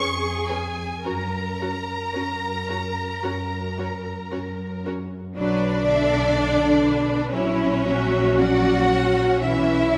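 Classical slow romantic movement for string orchestra, yearning and elegiac, moving at 54-62 BPM in 4/4 with a rubato feel and cut from a longer piece. A dark, distant first violin section carries the melody with expressive vibrato above a soft-attacked second violin line, while the smooth, even violas fill out the accompaniment and warm cellos join a shadowy double bass section in anchoring the bass. All sections play bowed with vibrato throughout in a lush, reverberant recital hall, and the harmony shifts to B minor at 5.4 seconds before the chords fall away at 9.4 seconds.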